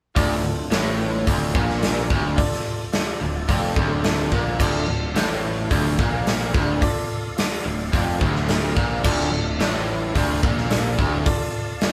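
A clear grand piano sounds first at 0.1 s, and the full band enters just after on a driving, swaggering classic rock riff in D minor at 108 BPM, cut from a longer piece and played live in one room with light reverb. Two overdriven electric guitars play the low riff: a bright, raw, picked garage guitar and a hollow-body one set back in the background, joined by a growly fuzz bass and a big acoustic kit with punchy kick, medium-tuned snare and bright cymbals. Beneath them, a fat tonewheel organ holds very quiet sustained chords through a slow rotary speaker with key click, the piano's intimate accompaniment rings with long sustain and audible action noise, and the guitars stop at 11.3 s.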